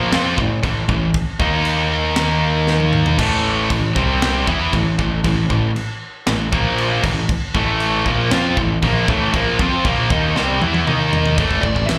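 A half-time heavy metal groove in straight 4/4 drives this aggressive, epic cut from a longer piece, heard live through a club PA with light reverb, as a bright, up-front high-gain guitar and a second distorted guitar in the background grind out the riff with slapback echo over a punchy, fuzz-overdriven picked bass and an airy, polished acoustic drum kit whose kick, snare, toms and crash break into fills, before a dark lead guitar slips in at 11.6 seconds.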